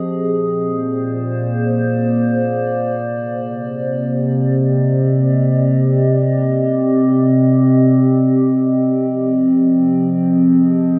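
Floating in free time, this serene, melancholic ambient excerpt features a lone warbly, detuned tape-like pad with a dark, nostalgic lo-fi tone, slow attack and long release, sitting up front, washed in chorus and delay inside a cathedral reverb, as its sustained chords drift from Bb7 to Cmadd9 at 3.0 seconds and on to Fm7 at 8.9 seconds.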